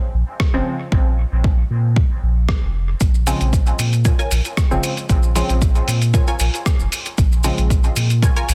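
Dub techno at 115 BPM in Bb minor, this hypnotic, hazy fragment from a longer piece rests on a single Bbm7 chord, with a round, sine-like sub bass pumping against an overdriven, up-front electronic kick and a muffled, pitched-down sampler kit of hi-hat and rim click soaked in dub echo. A muted, detuned sawtooth chord stab with chorus, phaser and a sweeping filter drifts through echoes from 0.5 seconds, grainy acoustic maracas join at 3.0 seconds, and at 4.1 seconds a higher, resonant, wave-folded stab riff with a bright filter pluck enters, also phased and pumping. The sound sits in digital ambience under a dense, heavily limited modern master.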